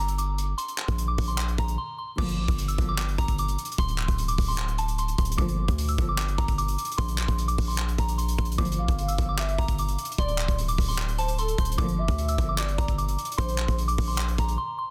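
A hard-hitting, heavy 808-style bass anchors this eerie half-time trap excerpt at 150 BPM in G dorian, joined by a soft, pure synth bell melody shimmering with chorus and phaser, a crisp, punchy fusion drum kit with a softly clipped snare, brief bowed chamber string stabs with digital delay in the background, and a velvety, detuned synth lead gliding in at 8.8 seconds, all in a dense, heavily limited, dry mix.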